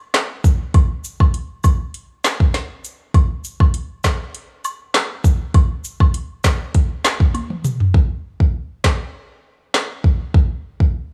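Dancehall at a bouncy, sunny 100 BPM in straight 4/4, built on an up-front electronic afro-pop drum kit with a deep kick, woody snare, metallic hats, handclaps and toms, joined by close, acoustic woodblock and cabasa that sit low under the kit. The drums play a fill from 7.3 to 7.9 seconds, the percussion drops out at 7.8, and the drums carry on into a new section over a digital ambience, all captured in a dry, gritty small-room sound on this short cut from a longer piece.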